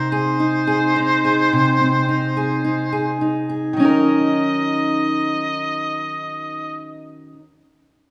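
A mellow harmonica with light vibrato and scooped notes carries a vintage, pop-style melody over warm, fingerpicked steel-string acoustic guitar from the start of this wistful, reflective acoustic pop excerpt, both up front in a lightly swung sixteenth-note feel and set in a reverberant recital hall, with the harmony moving from Ab/C to Ebm7 at 3.8 seconds before the harmonica stops at 6.8 seconds and the guitar plays on alone until 7.4.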